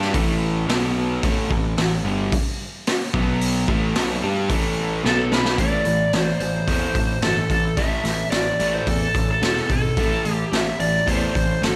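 A dark, up-front lead guitar through a small cranked amp, edged with overdrive and slapback echo, enters at 5.1 seconds over a menacing, driving hard rock groove in straight 4/4, built on a crunchy, double-tracked rhythm guitar riff, a round, fuzzed electric bass, and a gritty, saturated garage drum kit whose fill at 5.0 seconds leads into the second section, with the mix set in a lush hall reverb for a big arena sound in this passage cut from a longer piece.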